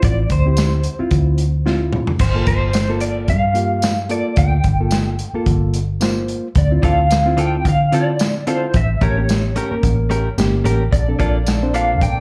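Smoky and brooding, this straight-eighth soul blues in D minor moves at 110 BPM in 4/4 with a light sixteenth-note swing, caught at a live gig through the venue's PA with club reverb and cut from a longer piece. An electric guitar through a small old amp carries the melody, its slightly broken-up, lo-fi tone treated with tremolo and slapback echo, while a reedy, bright electric piano heard through its built-in speakers supplies accompaniment with its own slapback echo. Up front, a foam-muted vintage bass sits round and punchy beneath a crunchy breakbeat kit whose saturated, gritty drums have dark cymbals, a tight kick and a rolled-off top, with tambourine and toms in the mix and a drum fill at 1.7 seconds. From 6.8 seconds a direct-recorded clean guitar adds compressed stabs through slapback echo and digital delay, and at 10.9 seconds a mellow jazz-style horn section enters in the background with sustained, softly attacked chords and light vibrato. 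The harmony moves from Dm7 through Gm7 and an A7b9 before settling on Bbmaj7.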